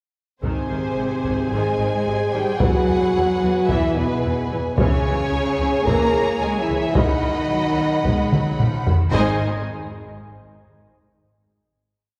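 Heard from further back in a concert hall, this complete piece is bathed in a wet, lingering reverb that gives the orchestra a grand sense of space. It is a majestic, triumphant cinematic film score at 110 BPM in a straight 4/4, moving through Ab, E, Db minor and B before coming to rest on a final Ab chord. A lush, focused violin section carries the melody with vibrato, doubled at the octave by an expressive cello section with a soft attack, while a second, intense violin section holds sustained chords. Beneath them, the violas play a driving ostinato from the background and answer at phrase ends, the chamber double basses bow a smooth, even bass ostinato, and a French horn section in classical style adds clear sustained chords with light vibrato. Heavy-stick taiko drums with a vintage, band-limited tone pound out a big ostinato that closes with a fill from 8.3 to 9.1 seconds.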